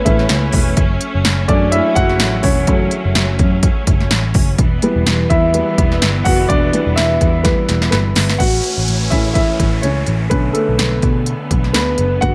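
A woody, polished upright piano leads from the first moment alongside lush, distant bowed strings in this hopeful, anthemic piano-driven pop piece at 126 BPM with a light swing, soon joined by a round, foam-muted vintage electric bass and a punchy, layered deep house drum kit with smooth hats, whose fill at 7.4 seconds ushers in a new section at 8.4 seconds where an electronic downlifter appears beneath the piano's continuing solo, the whole set in light reverb.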